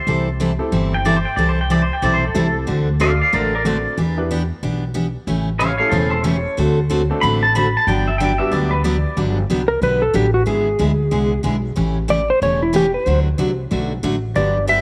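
A bright, twangy pedal steel guitar leads this playful, down-home western swing passage, taking a solo from the start with fingerpicked slide lines and volume swells until 9.2 seconds. A dark, clean lap steel then carries the melody from 9.7 seconds, its compressed slide phrasing up front with swells of its own. Beneath both, a full-bodied jumbo acoustic guitar picks out an accompaniment, and a woody, thumpy upright bass on gut strings plucks a dark foundation with a bouncing swing feel. A polished upright piano sits in the background, intimate enough that its action noise can be heard, and it drops away for most of the lap steel's turn before returning briefly at the close. A moderate plate reverb gives the recording a gentle sheen as the chords move through easy sevenths, and the passage feels cut from a longer piece.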